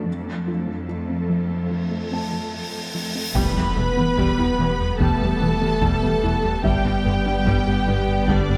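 A huge, bright cymbal swell from 1.7 s leads to an impact at 3.4 s. There this brooding, relentless hybrid orchestral and electronic film cue at 73 BPM in E dorian opens out: lush violins carry a vibrato melody over a distant second violin line, with violas, a dark French horn section, heavy taiko drums, a round analog bass riff, deep sub bass and bowed double basses. From the start, an ethereal, warbling pad with chorus, a cello section on the bass, a soft felt-muted upright piano with delay and audible action noise, and a very quiet pluck playing arpeggios set the mood over F, moving to Em and then to G at 6.6 s, all cut from a longer piece in moderate scoring stage reverb.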